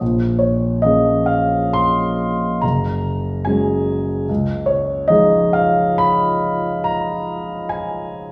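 A clear concert grand piano plays alone in this dreamy, hazy impressionist classical fragment, cut from a longer piece, moving in a rubato 5/4 at roughly 64-74 BPM. Its natural tone sits up front, with a deep bass reaching down to Gb1, a range climbing to C6, and a long sustain. Over about 8.3 seconds the harmony drifts from Bbm7 to Gbadd9 at 2.6 seconds and Db9 at 4.3 seconds, all bathed in the wet reverb of a recital hall.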